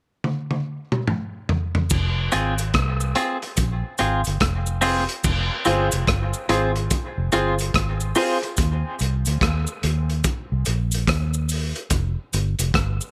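A swung sixteenth-note groove at 72 BPM in 4/4 opens this heavy, deep dub reggae excerpt in F minor. A crunchy, saturated breakbeat kit with dark cymbals, a tight kick, rim clicks and toms plays a drum fill before the round, foam-muted electric bass and a close cabasa arrive at 1.9 seconds on Fm. A clean, twangy electric guitar with subtle chorus and dub echo carries the accompaniment until 8.5 seconds, joined partway through by woody upright piano stabs also sent into dub echo, while the harmony shifts to Eb5 and then drops away at 11.9 seconds, all in light reverb with a small-room feel.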